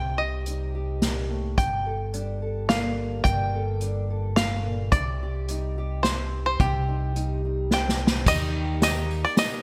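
Bright 1980s-style digital production with light reverb frames this yearning, wistful indie folk excerpt in 3/4 at 108 BPM, where a twangy bluegrass banjo played with fingerpicks carries the melody up front over a dark, fingerpicked archtop guitar with lush chorus and audible finger squeak, a round, punchy fingered electric bass and a distant, roomy unplugged drum kit with gated reverb and bundle sticks, whose fill at 7.7 seconds leads the harmony from Cm and Gmadd9 to Eb at 8.3 seconds, when a shimmering, octave-doubled twelve-string acoustic guitar and a jingly tambourine in the background join the building arrangement.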